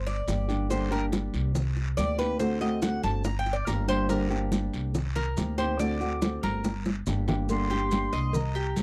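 A dry, close 1970s-style studio sound frames this nostalgic, sultry Cuban son and guajira at 141 BPM in G harmonic minor. An up-front, metallic Cuban tres with doubled strings solos in picked arpeggios over a woody, thumpy pizzicato upright bass and a small, thumb-plucked nylon-string guitar, joined by a raspy, band-limited guiro and, in the background, round bongos and cowbell, bright damped congas and grainy maracas. A drum fill arrives at 6.6 seconds, and an airy, distant jazz flute with vibrato and slapback echo enters at 7.5 seconds.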